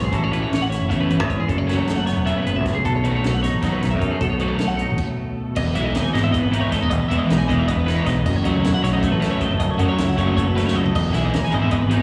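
Bright, twangy twelve-string electric guitar arpeggios sit up front with slapback echo in this wistful, intricate math rock and midwest emo excerpt in E major at 311 BPM in 7/8, over a second, warm twelve-string guitar playing chorused, slapback-echoed chords such as A6, F#m11, B9 and Emaj7, a growly fingered electric bass, a double-tracked crunchy overdriven guitar riff, and a compact cocktail drum kit with a high-tuned snare, tight kick and dark cymbals; the band halts for a stop at 5.0 seconds before a drum fill at 10.7 seconds, all heard as a live gig through the venue's PA with recital hall reverb.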